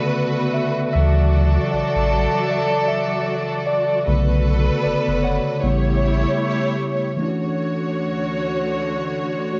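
Dreamy and romantic, this lightly swung R&B fragment features a mellow, clean tine electric piano soloing until 7.2 seconds over lush, woody bowed strings with vibrato sitting close and up front, both tinged by cassette tape, while a deep, round sub bass enters at 0.9 seconds and a very quiet, warbling FM synth bell glints from 2.5 seconds, all captured in a dry, dull-topped home cassette recording.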